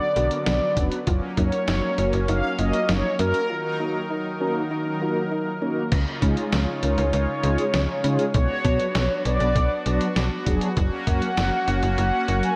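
A snappy, slap-like FM bass sits up front with a metallic attack, anchoring this upbeat yet wistful synth-pop excerpt at 99 BPM in 4/4 and F# major. Above it, a mellow synth brass carries the melody, dark and round, with chorus and a diffuse ambient delay, while a second synth brass adds accompaniment with a soft attack, a filter swell and its own chorus. A bold, brilliant analog pad holds sustained chords with chorus and tremolo, and a gentle, triangle-toned pluck plays arpeggios in the background until 5.8 s. The lo-fi sampler-style kit is compressed, pitched down and muffled, with a thumpy kick, medium-tuned snare, hi-hat and crash, and sounds re-recorded in a small room. A break arrives at 3.5 s, the chords move through Bm, F#, D#m and C#add9, and a lush hall reverb soaks the mix in a dreamy haze.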